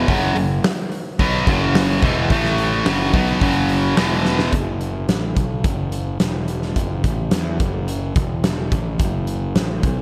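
Hard rock in F# minor at 108 BPM, this short excerpt from a longer piece feels heavy and aggressive, with a straight 4/4 drive. An overdriven, double-tracked electric guitar plays a bright, picked riff up front with spring reverb, moving through F#5, A5 and E5 power chords before it stops at 4.5 seconds. The fuzz bass, picked and punchy with a direct-and-amped tone and added overdrive, runs the full length up front in the mix, carrying the F# minor harmony once the guitar drops out. A big acoustic rock kit comes in at 0.1 seconds, dark and smooth, with a fat snare, punchy kick and hi-hat soaked in gated reverb, and a drum fill at 4.3 seconds sets up the second section. The production has a bright 1980s-style digital sheen and light room reverb.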